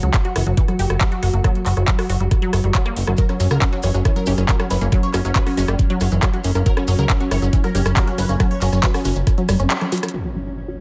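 A knocking electronic kick drum sits up front in this driving, alien psychedelic trance excerpt at 138 BPM in F# major, joined by a fat, thick analog bass built from sawtooth and square waves with a moving notch. A lush, detuned unison pluck carries the riff with sidechain pumping and digital delay, while a pulsing, tempo-synced gated texture holds sustained chords in the background through chorus and built-in reverb. A garage drum kit with metallic, low-pass-filtered hats adds handclaps and rim clicks, and grainy, saturated maracas enter at 3.2 seconds alongside a punchy supersaw stab melody coloured by phaser and tape echo. After a band accent and a drum fill near the end, an electronic impact lands at 10.1 seconds over a deep, moody ambient pad that is barely audible. The whole mix sits in a light reverb.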